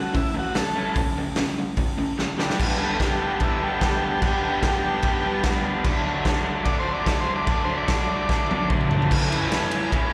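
A rowdy, raw garage rock excerpt opens at 0.0 s with a buzzy, overdriven combo organ carrying the melody between E4 and D5, its light vibrato and slapback echo lending it a vintage edge. Alongside it, a bright, double-tracked electric guitar plays a picked, overdriven riff up front, with its own slapback echo. The acoustic drum kit joins almost immediately, also up front, with a punchy kick, a medium-tuned snare, hi-hat, ride, crash and toms, and its sound is saturated and gritty with a rolled-off top and a pumping small-room character. At a straight 148 BPM in 4/4, the harmony moves from A through G5 and G to D before returning to A, with drum fills leading into the change at 2.6 s and again into the closing A chord. The organ drops out at 8.7 s while guitar and drums carry on to the end, and the performance sounds like a live gig heard through the venue's PA, with light reverb and a recital hall ambience.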